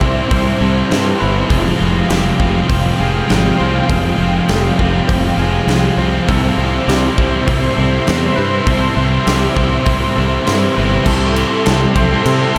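Shoegaze and dream pop rock in C major at 100 BPM in a straight 4/4, this cut from a longer piece feels dreamy and blissful, its whole mix soaked in a moderate cathedral reverb. An airy, detuned sawtooth pad with a slow attack and chorus holds sustained chords high above, while a twangy, compressed clean electric guitar, recorded direct, plays arpeggios in the background through lush chorus and diffuse ambient delay. Two riffing guitars form the core: a biting overdriven part carrying reverse reverb, and a thick fuzz guitar sitting lower in the background with distortion and ensemble chorus. A growly, punchy fuzz bass played with fingers anchors the low end, and a huge arena drum kit with bright cymbals, a medium-tuned snare and a punchy kick drives the groove in a big, natural room sound. The harmony moves from Cmaj7 to Fmadd9 at 1.5 seconds, back to Cmaj7 at 6.3 seconds, and settles on C6 as a new section begins at 11.1 seconds.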